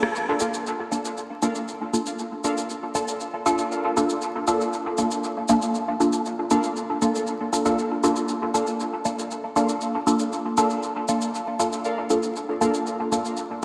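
A dreamy, reverb-soaked mix with vinyl crackle and a lush hall tail sets a nocturnal, cavernous mood for this dub techno excerpt, a straight 4/4 at 118 BPM tuned to A4 = 436 Hz and resting on a Bbmaj7 chord. Up front, a muted, deep filtered chord stab of detuned sawtooth and square waves with a fast attack and short decay runs from 0.0 to 13.3 seconds, colored by phaser and dub echo. Further back, warbly, nostalgic lo-fi synth keys play an evolving riff through chorus and dub echo, while close, grainy acoustic maracas keep a mellow pulse.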